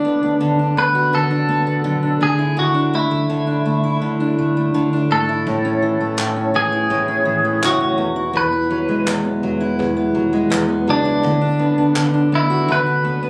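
Captured on a phone in a club-like room with light reverb and compression, this heartfelt, easy-going acoustic pop fragment sets a bright, twangy clean electric guitar melody up front over a full-bodied fingerpicked jumbo steel-string acoustic guitar, with a dark, round, foam-muted vintage electric bass sitting in the background and a vintage brush kit with a tight kick and handclaps entering at 5.5 seconds.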